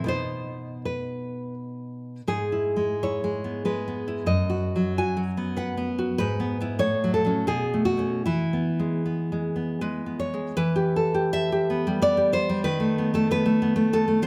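A lone nylon-string guitar, fingerpicked with a bright, full-bodied tone from fresh strings, opens this tender, nostalgic romantic piece in a lilting three-beat metre, its rubato phrasing stretching and easing the pulse. Close, detailed microphones keep the guitar up front, catching finger squeaks against a moderate recital-hall reverb. The phrase settles on an E chord at 8.2 seconds before turning toward a darker passage at 10.6 seconds, and this excerpt breaks off at 14.3 seconds, cut from a longer piece.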